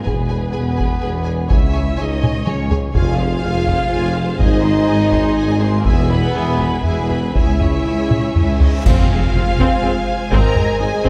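Two violin sections open together, one carrying a bowed, vibrato-laden melody while the other traces a smooth, even second line above it, over lush, dark sustained chords from the full strings and distant, roomy French horns. This is an epic, dark orchestral film cue in F minor at 123 BPM in 3/4, with a straight feel and chords cycling through E, Dbm, Fm and Ab. A heavy-stick taiko ensemble drives the piece from the outset, sitting close and prominent. Beneath it, focused violas hold the accompaniment in the background while a mellow tuba, rich but very quiet cellos and woody double basses anchor the low end. Very quiet timpani on F2 first sound at 2.9 seconds, and dry, close cymbals and concert bass drum enter at 5.9 seconds with a swell. A huge, dark reverse cymbal leads into a band accent and an impact at 8.9 seconds, marking a new section, all set in a moderate scoring-stage reverb in a passage cut from a longer piece.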